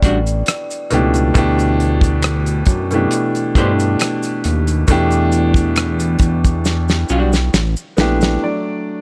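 Soulful and sultry, this short neo-soul R&B excerpt at 68 BPM with a lightly swung 16th feel sets a clear, up-front grand piano and a fat, saturated analog bass over a damped, dry 70s drum kit with a tight kick and fat snare, while a dark, clean hollow-body jazz guitar carries a second line, a mellow vibraphone with tape echo rings out only in the first 0.9 seconds, maracas and finger snaps enter at 0.3 seconds, and a drum fill closes out the passage from 6.7 seconds as the chords move from Em7 through Dsus4 and Asus2 in a small room.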